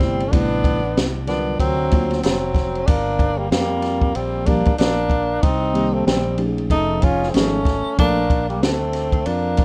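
A smooth, cool jazz-hop groove at 94 BPM in Bb major rides on an up-front acoustic jazz kit, its boomy kick, high-tuned snare, hi-hat and dark ride cymbal sounding natural in a studio room, with a swung sixteenth-note feel. A breathy tenor saxophone carries the melody from the start, whispered and intimate, with a soft attack, scooped notes, vibrato and an analog delay trailing its lines. Beneath it, a bright, punchy trombone plays a forceful second line with vibrato, sitting distant and roomy in the mix. A worn, slightly out-of-tune tine electric piano supplies clean, mellow accompaniment until it drops out at 8.2 s, while a fretless electric bass, warm and treated with a lush chorus, anchors the low end through changes that move from Am9 and D7alt to Gm7, then Cm7 and F7alt, before landing on Bbmaj7. Light reverb and a rough home-demo mix frame this short cut from a longer piece.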